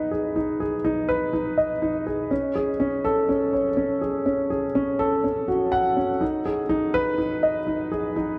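Hopeful and tender, this short electronica fragment is a build-up carried by a single dark, mellow concert grand piano, played solo across the full 8.4 seconds with its action noise audible and its intimate, up-front tone set inside a huge, wet ambient reverb.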